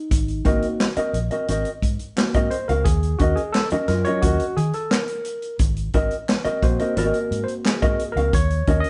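A straight 4/4 funk groove with a cool, sly mood is set by a swinging big-band drum kit with a punchy kick and medium-tuned snare alongside a round, foam-muted fingered electric bass, and a dark, clean, compressed electric guitar joins shortly after, playing accompaniment. Over chords alternating between Ab9 and Ebm7, a barky tine electric piano takes the solo with lightly overdriven stabs through a combo amp, sounding from the very first moment, while a crisp group handclap comes in at 0.8 s and stops at 7.8 s. The band sounds live in one room with light reverb and a soft top end, in a short cut from a longer piece.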